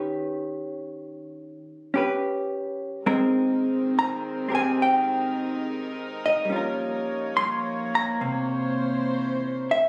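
A clean, picked hollow-body electric jazz guitar opens this wistful, smoky swung jazz ballad up front with dark, compressed accompaniment chords moving from Ebaug7 through Abmaj9 and Gm7b5 to C7b9, joined at 3.0 seconds by a bowed string section whose nasal, reedy gut-string tone holds sustained period-style chords beneath it in a moderate studio ambience heard as if through a phone in the room.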